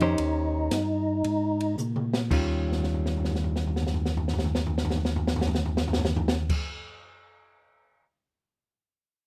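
Lightly reverberant, this greasy, soulful soul jazz organ trio excerpt swings at 112 BPM in Eb mixolydian: a fat, percussive tonewheel organ with slow rotary speaker and chorus vibrato states a brief up-front melody until 1.8 s, a mellow, round tonewheel organ carries the bass through the same slow rotary and chorus vibrato, a clean, compressed hollow-body guitar picks its accompaniment, and an up-front small-room drum kit with dark cymbals, a high-tuned snare and a boomy kick plays fills from 1.8 s as the harmony moves from Eb13 to Eb9 at 2.3 s.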